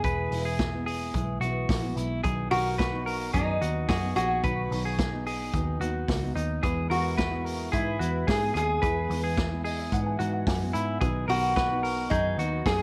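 A light studio reverb gives this short, nostalgic cut of jangly indie pop a youthful glow, with a metallic, nasal lap resonator guitar up front carrying the slide melody through a slapback echo. Beneath it, a full-bodied fingerpicked jumbo acoustic and a bright, compressed semi-hollow electric guitar spinning arpeggios in its own slapback echo ride over a round, foam-muted picked bass and a vintage kit with a punchy kick and a rolled-off top. A dark, woody, slightly detuned upright piano with audible action noise joins in the background at 6.6 seconds and adds a fill from 9.4 to 11.0 seconds, just before the chords settle back to B.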